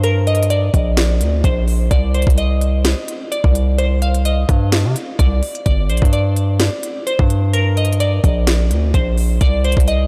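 A glassy, crystalline wavetable pluck with chorus and delay carries the melody of this brooding, hard-hitting trap excerpt at 128 BPM in a half-time feel, alongside a heavy, saturated 808-style bass that sits up front and a trap kit of knocking kick, sharp snare and crisp hats, all entering together and cycling between Gm and Cmadd9 in G minor inside a dreamy cathedral reverb.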